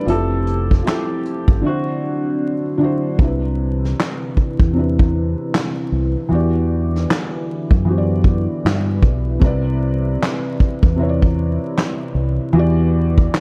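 This mellow, nostalgic lo-fi hip hop piece at 77 BPM opens on a dark, slightly broken-up electric guitar melody through a small old amp with spring reverb, alongside a soft felt-muted upright piano with audible action noise and a deep, detuned analog pad with chorus in the background. A round dub bass and an up-front brush drum kit with punchy kick, handclaps and hi-hat join almost at once; the guitar phrase ends at 2.8 s, and the drums drop out from 1.6 s until 3.2 s, returning with the hi-hats muted. Swung sixteenths, vinyl crackle and a dusky production carry chords moving from Fmaj9 and D7 into an alternation of Cmaj7 and Em7.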